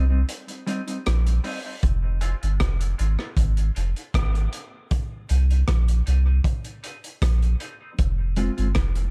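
Dub reggae with a deep, meditative mood, heard in a short excerpt from a longer piece and set in a small room with an echo-heavy mix. A soft, round sub bass sits up front beneath a crunchy breakbeat kit of tight kick, hi-hat and rim click that enters at 0.3 seconds, its gritty, saturated tone dark and rolled off at the top. Quietly behind them, a mellow, clean electric guitar played with the fingers carries the chords through dub echo and a high-pass filter, with a filter sweep running over it until 8.0 seconds.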